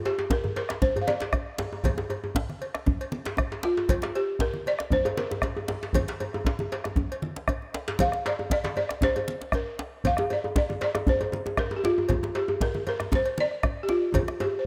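Set in light reverb and small-room ambience, this festive, powerful fragment of West African drum ensemble music moves at 117 BPM in a straight 4/4 feel in Bb major pentatonic, with an up-front, woody, buzzing balafon played with soft rubber mallets carrying the melody between F4 and F5 over a deep, dry bombo, a warm djembe struck with hard hands, a second tight, cracking djembe with a vintage, band-limited tone, bright low-tuned congas and a metallic cowbell, before a drum fill closes things out at 14.1 seconds.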